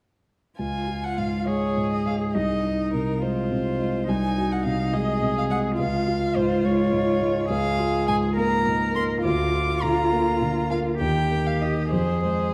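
Graceful and cheerful, this quick classical-period piano trio movement in Db major unfolds in a rubato 6/8 at 69 BPM (dotted quarters), with a single bowed violin carrying the melody up front in a rich, focused tone with vibrato, a smooth, even bowed cello shaping a second line beneath it, and a grand piano with long sustain supplying up-front accompaniment, the three parts playing together from 0.6 to 12.5 seconds within a moderate scoring-stage reverb and a dark production, in a passage cut from a longer piece.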